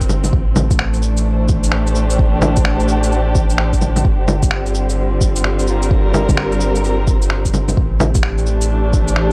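A dry, gritty hardware sound with transformer saturation, cassette-tape character and digital ambience frames this melancholic, wistful future garage fragment at 129 BPM in A phrygian, swung on the sixteenths. Up front, a dark, bowed chamber string ensemble holds expressive chords with vibrato and soft attacks, moving from Am7 to Gm at 4.1 seconds and back to Am7, pumping with sidechain alongside a round, soft dub sub bass. An overdriven, deep, layered kick re-recorded in a small room anchors the beat, while a muffled, pitched-down, compressed sampler kit of shaker, bongos, cabasa and finger snaps adds tape-tinged texture.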